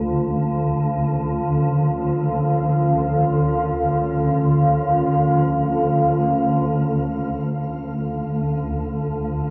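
A huge, wet reverb with a long 7.8-second tail surrounds this ambient fragment, and a worn, warbling cassette-tape quality gives the whole recording an unsteady pitch drift. Up front, a swarming drone sits low and tense, its detuned, wave-folded tone evolving through a granular haze while a filter sweep works on it until 6.7 seconds. Above it, a deep, dark pad holds sustained chords with slow attacks and long releases, its sawtooth and sub-octave layers softened by chorus and a shimmer reverb. At 6.9 seconds a faint, flickering grainy texture appears in the upper register, mellow and granular, glinting through the same shimmer until the end. The mood is desolate and unsettling, and the passage feels cut from a longer piece.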